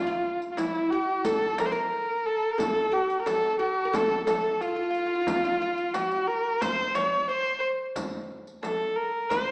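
Warm and stately, this short fragment of a Persian modal ensemble piece moves with a straight pulse. A single bowed kamancheh carries the melody from the very start, sitting up front with a smooth tone shaped by vibrato and portamento. Behind it, a fretless oud plucked with a plectrum adds a quieter second line, its double strings giving a woody edge. The percussion enters within the first second: a deep, large frame drum with a compressed, saturated weight, and a riq whose jingles sparkle close and dry in the background. The ensemble sits in a generous recital-hall reverb, though the overall sound has the character of a small speaker.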